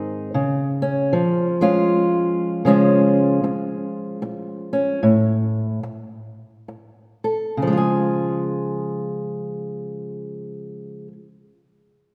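This folk piece for solo fingerstyle acoustic guitar is a pastoral, hopeful fragment in a lilting, swung 3/4. The fingerpicked old ladder-braced guitar sits up front with a dark, woody tone from old strings; it rests on a Db chord, slows down between 2.7 and 7.6 seconds, and returns to Db at 7.6 seconds. A wet, lingering reverb from a church or concert hall surrounds the instrument.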